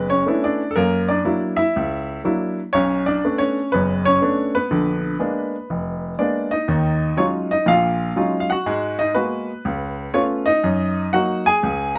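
A clear baby grand piano carries this solo jazz fragment alone, its natural tone sitting up front with short sustain and a touch of light reverb around it. The feel is a late-night swing in 4/4, with the eighth notes swung and the playing ranging from deep in the bass up into the upper middle of the keyboard. The harmony is rich with extended and altered chords, moving from Bm11 through F#7b13 and Bm9 to A#7b9 in the opening stretch. At 6.7 seconds the music shifts to a new tonal centre, passing through Ebm11, Abm9 and Dbaug7 before settling on Gb6. This twelve-second passage is cut from a longer piece.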